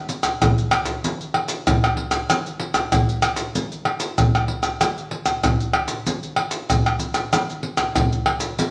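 Deep surdo anchors this short samba fragment alongside maracas, pandeiro and tamborim in a purely percussive ensemble. The groove moves at 95 BPM in 4/4 with a straight feel, and despite the absence of melody the mood comes across as yearning and bittersweet. The ensemble sounds acoustic and up front, captured in a small room and set in a wet studio reverb that lingers about 0.9 seconds. The percussion plays from 0.1 to 8.7 seconds, shifting from an opening section into a second one at 3.6 seconds. Cut from a longer piece, the clip offers a brief, intimate glimpse of the samba percussion texture.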